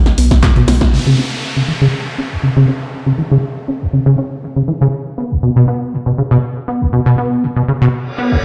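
A 120 BPM straight four-beat pulse opens this gritty, trippy acid house cut with a drum-machine fill of overdriven handclaps, hi-hat and snare plus a punchy, dry kick that hits a band accent at 0.8 seconds alongside a brief deep, thick saturated sub bass with sidechain pumping, while an up-front squelchy, resonant sawtooth acid bass riff, roughened by tube saturation, ensemble chorus, 12-bit sampler grit and delay, carries on through a filter sweep from 0.9 seconds as a faint downlifter and reverse cymbal lead to the cut-off at 8.4 seconds, all set in a lush hall reverb and the stone echo of a bare room.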